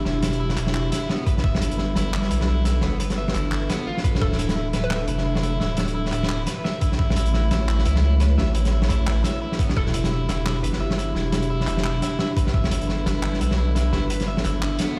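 Half-time drum and bass with a tense, spacious mood, this excerpt rests on a saturated sub bass that is deep, thick and sine-like, sitting up front from the start and moving through a chord cycle of Em7, Gadd9, Dmadd9 and Aadd9. A dark analog pad holds sustained chords throughout, its detuned square and sawtooth layers colored by chorus, ring modulation, vintage 12-bit sampler grit and sidechain pumping. An electric guitar at the edge of break-up picks scooped arpeggios beneath tape echo, while a crunchy breakbeat kit of handclaps, hi-hat and a high-tuned snare sounds gritty and rolled-off, with a swung sixteenth feel. An electronic kick with a knocking, tape-warm punch appears only in brief bursts, first at 1.3 seconds and most fully from 6.8 to 9.8 seconds. A hollow, bouncy square pluck with chorus and digital delay sits in the background, surfacing briefly around 4.2 seconds and again near 9.8 seconds. 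The whole mix carries light studio reverb and the reverb of a stone room, as if heard over a big sound system in a bare space.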